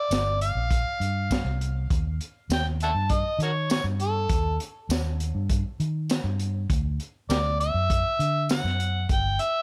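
Dry and up front, this brooding, mournful straight-eighth soul blues excerpt at 100 BPM sets a gritty, overdriven harmonica solo with tongue slaps over a round, foam-muted vintage fingered electric bass and a crunchy, saturated small-room breakbeat kit with a high-tuned snare, punchy kick, tambourine and rolled-off top, moving through Gm7, Eb and D before the harmony drops away at 9.1 seconds.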